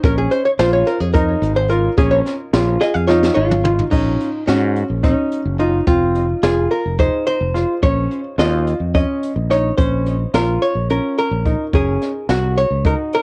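Driving 7/8 at 215 eighth-note beats per minute gives this intricate progressive band piece in Bb minor its straight-feel momentum, with a brush kit of dark cymbals, a high-tuned snare and a boomy kick playing a fill from 3.1 to 3.9 seconds. A dark, clean, compressed hollow-body archtop guitar sits up front, soloing through the opening and then carrying the melody, while an intimate grand piano with audible action noise plays arpeggios beneath it, both tinged by cassette tape and tape echo. A bright, growly fretless bass anchors the low end until 12.9 seconds, and the whole cut has the light reverb and character of a home cassette recording.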